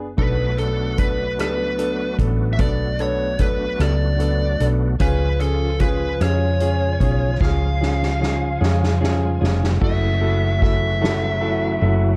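A dark, warm small-room sound frames this aching, dramatic six-eight pop ballad excerpt, where a round, punchy hollow-body bass sits up front beneath a clear concert grand piano, a biting overdriven lead guitar carries the melody, and a reedy tonewheel organ with key click and fast rotary speaker hovers in the background, while a distant, roomy drum kit played with soft mallets adds a fill from 7.4 to 9.8 seconds and a very quiet, compressed clean electric guitar picks arpeggios from 5.0 seconds.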